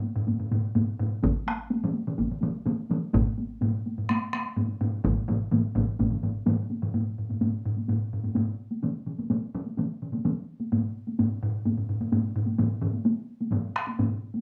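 A rough, home-demo sound with small-room ambience and a wet studio reverb frames this short cut from a longer Japanese traditional taiko performance, ceremonial and driving in a straight 4/4 at around 127 BPM that speeds up throughout. Two taiko ensemble parts struck with heavy sticks sit up front in a small-room acoustic, one sounding from the very start and the other joining at 1.2 seconds and carrying on nearly to the close. Alongside them, one solo taiko part has a vintage, band-limited character and runs almost the full length from 0.2 seconds. A second solo taiko part, close and dry, adds its heavy-stick strikes only from 1.2 to 6.1 seconds, dropping out just before the music moves into its second section at 6.9 seconds. The result is a dense, acoustic wall of drums whose mix of roomy, band-limited and intimate textures gives the quickening pulse a raw, ritual urgency.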